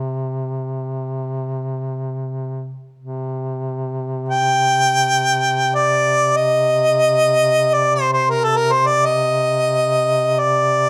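Closely miked with a gentle reverb and fine detail, this short cut from a longer Caucasian folk lament unfolds in free time in C minor, tuned to A4 = 441 Hz, with a mournful, solemn mood. A mellow duduk holds a low C3 drone from the start, its notes softly attacked, scooped and touched with vibrato in folk style. At 4.3 seconds a clear harmonica enters up front with a classical-style melody between A4 and G5, shaded by light vibrato, and both carry on to the end at 10.9 seconds.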